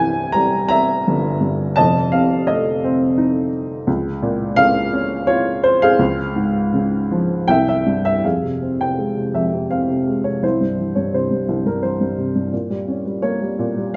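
A woody upright piano with short sustain sits up front in this brooding classical solo piece, unfolding a lyrical, rubato line in 3/4 through a moderate recital-hall reverb and a darkened top end, and after a brief fill from 7.1 seconds it moves into a second passage at 8.2 seconds before the excerpt is cut off at 14.0 seconds.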